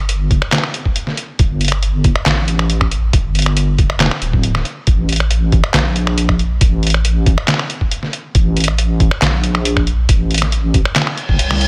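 Deep dubstep with a heavy, meditative half-time feel, cut from a longer piece and set in a dry, close space. A dark, wobbling sub bass with a detuned square-and-sine tone, chorus and tube saturation sits up front from the first moment, joined by a muffled, pitched-down sampler kit of finger snaps, handclaps, hi-hat and a medium-tuned snare, plus a compressed, thumpy electronic kick, both carrying a small room ambience. An electronic reverse cymbal rises into the final half second, arriving at 11.1 seconds.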